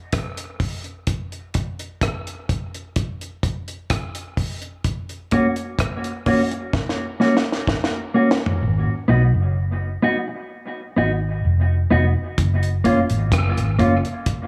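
A slow, straight 4/4 dub reggae groove at 64 BPM in G# dorian opens on a dry, dark drum kit with a high-tuned snare, tight kick, rim clicks and toms, joined at 5.3 s by a clean, compressed electric guitar soaked in dub echo, then a drum fill leads into the second section at 8.6 s, where a round, punchy, foam-muted bass enters over G#m7 and F#maj7 chords, all set in spring reverb for a meditative, heavy mood in this excerpt cut from a longer piece.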